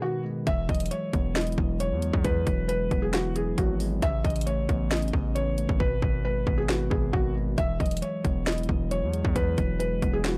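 Wistful yet triumphant, this short cut from a longer trap piece moves at 135 BPM in a half-time feel in E major. A felt-muted upright piano carries the melody up front, soft and intimate with audible action noise, softened by a low-pass filter and trailed by digital delay, while a mellow tine electric piano supplies clean, direct accompaniment beneath it. A dark analog pad, detuned and moody, barely registers in the opening moments before the distorted 808-style bass and overdriven trap drum kit arrive at 0.5 seconds. The bass is heavy and aggressive, a saturated sine with a noise layer and fast attack, while the kit pairs a hard-clipped kick and sharp snare with bright hats that drop out from 5.8 to 7.6 seconds. The chords move from Eadd9 to Aadd9, then G#m, before returning to Eadd9, all in a dry, close-sounding mix.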